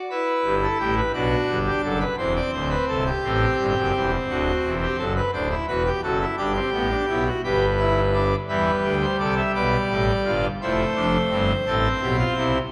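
A full pipe organ, up front with brilliant mixtures and a majestic, romantic voicing, plays alone from 0.1 seconds in this stately yet lively fragment of a baroque-style four-part classical fugue in G major, moving at 57 BPM in a straight 12/8 through G, C, D7 and G before turning to E minor at 8.5 seconds and then to F, all bathed in the long, wet reverb of a concert hall.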